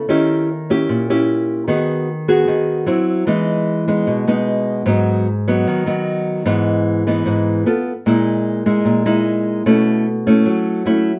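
Set in a moderate stone-room reverb with a live, one-room feel, this short cut from a longer bossa nova piece in E major at 150 BPM has a sophisticated, relaxed mood, as a lone fingerpicked nylon-string guitar, small, warm and up front, moves through rich chords such as D#7b9, G#m7/D#, Emaj7#11/A# and B9sus4 across two sections, the second beginning at 4.9 seconds.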